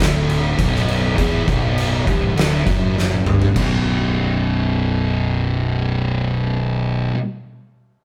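Stoner and doom metal cut from a longer piece, ominous and heavy, with a dark, double-tracked fuzz guitar riff up front, a round, overdriven fingered bass in the background, and an oversized low-tuned drum kit with a fat snare, punchy kick and dark cymbals in a bright stone room that plays a fill from 3.0 seconds and stops at 3.7 seconds, all caught live in one room with light reverb as the chord moves from B minor to B5.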